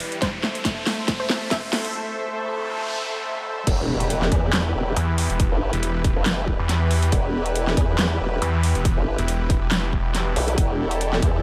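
Heavy wobble dubstep in E minor at 139 BPM with a swung half-time feel, this menacing, chaotic excerpt opens with a build-up where a bright, tape-echoed unison pluck melody sits in the background for its first 1.9 seconds over a lush supersaw pad with 12-bit sampler grit, sidechain pumping and a filter sweep, a riser and noise sweep, a dubstep drum kit with a huge snare and metallic hats, and a punchy, tape-warm electronic kick, before an impact lands the drop at 3.7 seconds, where a chorused formant-sweep wobble bass enters and a snarling, growling distorted saw bass joins at 5.0 seconds, the whole set in light digital ambience.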